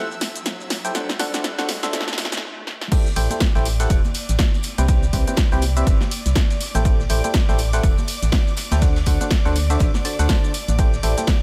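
Energetic and bittersweet, this piano house cut moves at 122 BPM in A dorian with a swung 16th-note feel, shifting between Am7, D7 and Cmaj7. It opens on a build-up where a biting, barking FM electric piano riff with chorus, tremolo and delay plays over clear, smooth violin-section chords in the background, while a punchy, overdriven analog drum machine plays a fill with crash, hi-hat, shaker and snare as an electronic riser climbs behind them. After a brief stop from 2.4 to 2.9 seconds, the drop arrives with an up-front, overdriven electronic kick, a muffled lo-fi soul kit with dark ride cymbal and fat snare, and compressed, saturated tambourine and congas tucked in the background. The hollow, organ-like FM bass enters at 3.2 seconds, dark and percussive with a fast attack, pumping against the kick along with the piano and strings. Studio reverb gives the mix a sense of space.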